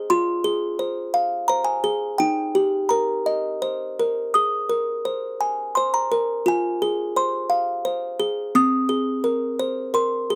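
A dry, close recording with a 1970s studio feel puts a solo music box up front, its large-box tone delicate, tinkling and bright. This gentle, sleepy children's lullaby sways in a rubato triple metre, with the music box alone from 0.0 to 10.4 seconds moving through Fm, Eb, Bbsus2 and Abadd9 before returning to Fm and settling on Abadd9. The passage is cut from a longer piece.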